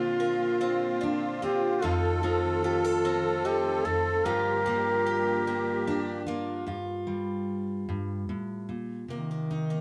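A mellow, smooth-topped duduk carries the melody up front in this nostalgic acoustic folk piece in 6/8, over a bright, full-bodied fingerpicked steel-string guitar with audible finger squeak, a boxy, octave-doubled twelve-string guitar picking arpeggios, a reedy, shimmering musette accordion second line that stops at 6.2 seconds, and dark, soft-attack sul tasto strings holding sustained chords in the background until 6.7 seconds, all set in a light reverb.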